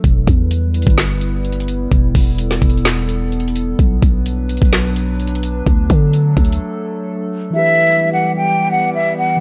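Eerie and menacing, this half-time trap hip hop excerpt at 128 BPM in E minor lays a warbling, lo-fi tape-like pad with chorus and reverb under a growling, buzzy 808-style bass and an up-front electronic kit of knocking kick, woody snare, metallic hats and handclaps, then bass and drums drop out at 6.6 s for a short break before a breathy, hollow silver concert flute with tape echo and vibrato takes the melody from 7.5 s over a clean tine electric piano with analog chorus.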